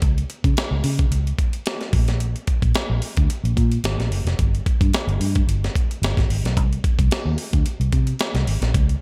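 A lightly reverberant, polished sound opens this breezy, upbeat nine-second excerpt of 1980s jazz-funk pop at 110 BPM in 4/4, with a gentle swing on the sixteenths and tuning a touch below standard pitch. A gritty, compressed breakbeat-style drum kit sits up front, its thumpy kick, medium-tuned snare and hi-hat carrying the character of a large room. Beside it, a vintage muted fingered electric bass, dark, round and amped, ranges from F1 to Db3 across the whole clip.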